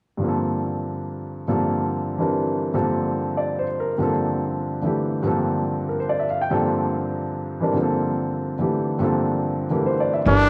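A warm baby grand piano opens this modal jazz excerpt at 0.2 seconds, sounding natural and up front as it lays a single Gm11 chord across a lilting, swung waltz metre. The mood is hypnotic and spiritual, with the piano carrying the accompaniment by itself through most of the clip. Just at 10.3 seconds, a breathy trumpet with vibrato arrives up front on the melody in a solo jazz style, joined by a pizzicato upright bass whose steel strings give a woody, thumpy tone. Both enter only moments before the recording cuts off at 10.5 seconds, leaving just a glimpse of the full group. A wet plate reverb lends the room a long, lingering tail, while lossy compression artefacts colour the sound.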